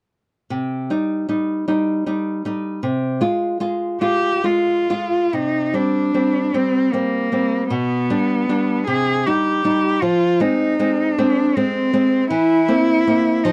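Yearning and melancholic, this romantic duo excerpt in C minor drifts in a rubato 6/8 at 42-54 BPM in dotted quarters, with a small, fingerpicked nylon-string guitar laying down accompaniment from 0.5 seconds before a single rich, bowed cello enters at 4.0 seconds with a soft attack, expressive vibrato and portamento, both heard up front in a dry, close 1970s-style studio sound as the harmony moves from Cm through Fm toward a closing C7/E.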